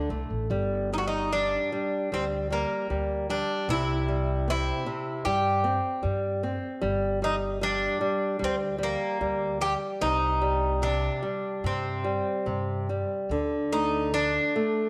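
Soaked in a wet echo-chamber reverb with small-room ambience, this mournful, longing fado-style ballad in G minor drifts in rubato around 75 BPM, as a boxy, fingerpicked nylon-string guitar and a woody, thumpy pizzicato upright bass open at 0.0 s before an up-front, metallic Greek bouzouki enters at 0.9 s to carry the picked melody on its double strings, in a fragment cut from a longer piece.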